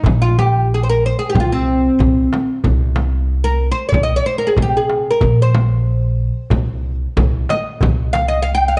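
A straight 4/4 pulse runs through this short cut from a longer Arabic maqam ensemble piece, its mood one of longing and melancholy. The fretless oud carries the melody up front, its plectrum-plucked double strings sounding woody and deep across a range from C4 to G5. Beneath it, the upright bass plays pizzicato on gut strings, thumpy and close, from Bb1 to C3. The percussion pairs a crisp metal-shell darbuka, played with soft hands and set in the background, with a large, deep frame drum struck with hard hands; both sound close and dry and stop at 8.3 seconds, while the oud and bass carry on to 8.8 seconds. Light reverb and a dark, warm production round off the whole ensemble.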